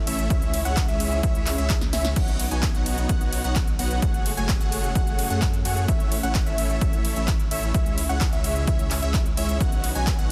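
A dense, heavily limited modern master with a digital ambience frames this anthemic, powerful slice of festival progressive house, cut from a longer piece. A big-room dance kit of crisp hats, a punchy snare, handclaps, and crash and ride cymbals enters at 0.1 seconds, joined at 0.3 seconds by a punchy, overdriven electronic kick that sits up front, both re-recorded in a large room, with a short drum fill at 1.8 seconds. Beneath them, a deep, saturated sine sub bass pumps against the sidechain. A huge, compressed supersaw riff with vibrato and a catchy, plucky unison lead arpeggio also pump, both trailing dub echoes, while the lead's filter sweep and moving notch keep its mellow tone shifting. Very quiet in the background, a lush, bright pad holds chords through chorus and phaser, moving from C#m through Badd9, F#madd9 and A before returning to C#m.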